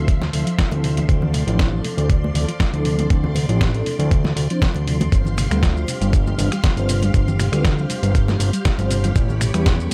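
Mellow, detuned synth brass with chorus, tape echo and sidechain pumping sits in the background beside a lush vintage string machine, soft triangle-toned pluck arpeggios and a fat, nasal, saturated analog bass from the first moment, before a gritty, thumpy electronic kick, a dusty soul sampler-style kit of fat snare, hi-hat, cabasa and finger snaps, and ringing high-tuned congas join in this cosmic, sensual nu-disco excerpt at 119 BPM in D dorian, moving from Dm9 through G7sus4 to A9 in a dry room with little reverb.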